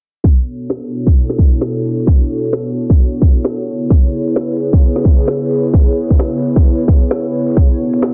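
A dense, heavily limited mix with little reverb and a dulled top end frames this moody, skippy two-step UK garage excerpt at 131 BPM in B dorian, swung on the sixteenths and moving from Bm7 to C#m7 and back. A punchy, tape-warm electronic kick sits up front from 0.2 s beside a warbling, lo-fi pad of detuned, wave-folded tones with its own reverb, while a breathy, noise-tinged pad holds soft sustained chords from 0.5 s, both pads chorused and pumping against the sidechain. From 0.7 s a low-pass filtered garage kit adds a woody snare and metallic hats, and a filter sweep runs across the drums throughout.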